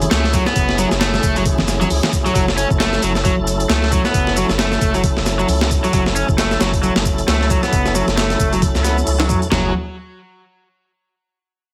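Raw and swaggering, this swung breakbeat is driven by a gritty, thumpy sampler-style drum kit up front, with a tape-toned electronic shaker in the background and soft, damped congas that drop out at 2.2 seconds, while a bright, crunchy overdriven guitar riff runs through a filter sweep and digital delay over a deep, tube-saturated sub bass and sustained organ chords with key click, fast rotary speaker and sidechain pumping, in a heavily compressed, radio-style mix.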